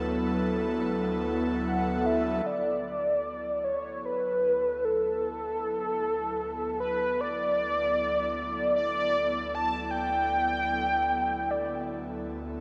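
A weightless, luminous ambient excerpt opens on an airy, breathy pad holding a sustained D69 chord with chorus and a slow attack. A velvety synth lead enters at 1.7 s with a smooth melody shaded by vibrato, chorus and delay, and the pad then fades in further from 2.5 s, all bathed in a lush hall reverb.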